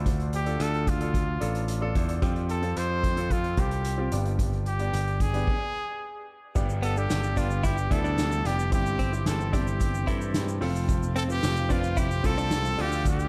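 Driving and dramatic, this echo-heavy piano-driven pop excerpt pairs a clear concert grand piano with dub echo and a growly, punchy picked electric bass under a distant soft-mallet drum kit with dark cymbals, while a bright trumpet with light vibrato and scooped notes carries the melody through dub echo; after a stop at 5.5 seconds, lush, very quiet bowed strings and a grainy tube shaker arrive at 6.6 seconds, followed at 6.8 seconds by a clean, compressed electric guitar riff with dub echo sitting in the background.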